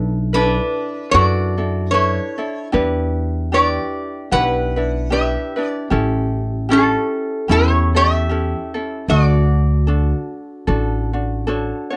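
Hawaiian music in a sunny, relaxed mood, moving at 76 BPM in 4/4 with a gentle swing on the eighth notes, in D major and tuned slightly below standard pitch. A metal-body resonator slide guitar carries the melody from 0.3 seconds, its metallic, nasal tone played with fingerpicks and given a slapback echo. A fingerpicked ukulele supplies light accompaniment, sitting a little lower in level than the other parts. An upright bass, plucked on steel strings, adds a woody foundation. The harmony moves through Bm11, Em7 and A7 before settling on Dmaj7. The sound is a dry, close 1970s-style studio recording with light reverb, each instrument up front, and the passage is cut from a longer piece, closing at 12.0 seconds.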